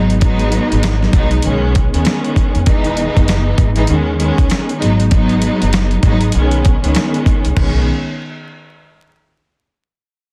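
Nostalgic and warm, this short cut from a longer boom-bap hip-hop track rides a 4/4 groove with a swung sixteenth-note feel. A lush, bowed string section carries the harmony with soft-attack vibrato and a hazy cassette-tape coloring, moving through G#m7, B69 and Emaj7 in a repeating cycle. Beneath it, a pizzicato upright bass with a woody, dark tone anchors the low end from the first moment until around 7.9 seconds. The sampler-style drum kit sits up front, gritty and compressed, with a thumpy kick, medium-tuned snare, rim clicks, hi-hat, toms and crash cymbal that sound re-recorded in a small room. The dry, dense and heavily limited mix is dusted with vinyl crackle, giving the whole piece a worn, crate-dug character.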